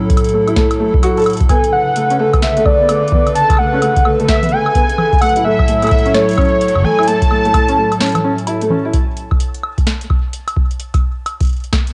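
A velvety synth lead, built from detuned sawtooth and wave-folded tones with chorus, vibrato and tape echo, carries the melody up front from 1.5 seconds in this glitchy, cerebral IDM excerpt with a swung sixteenth-note feel. Beneath it, a hollow, flute-like pad holds sustained chords with a slow attack, chorus and sidechain pumping, while a felt-muted upright piano plays intimate, short-sustained arpeggios through tape echo. A deep electronic kick sits up front alongside a booming analog drum machine of congas, woodblock, crisp snare and metallic hi-hats, both carrying a tape-warm cassette character. The harmony moves between F#m7/A and Bm9 before a break at 8.0 seconds; by 8.9 seconds the pad, piano and lead have fallen away, and the drums carry on alone until 11.9 seconds. The whole recording has a lo-fi home-cassette sound with dulled top end, set in a moderate spring reverb and digital ambience.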